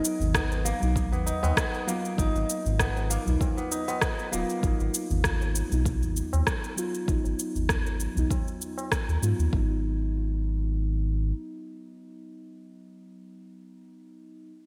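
A round, dark analog bass sits up front in this hypnotic organic downtempo excerpt at 98 BPM in G# dorian, its evolving sawtooth, sine and triangle tone pumping with sidechain under a filter sweep that runs until 9.5 seconds. Beneath it sit a deep, tape-warm layered electronic kick, an electronic cabasa and rim click up front in gated reverb, and low-tuned tabla in the background. A ringing, crisp fingerpicked kora plays delayed arpeggios until 6.3 seconds, while muted, felt-like synth keys with chorus, delay and sidechain pumping carry a G#madd9 harmony that settles on G#m, all in a bright 1980s-style digital production with light reverb and a swung 16th-note feel.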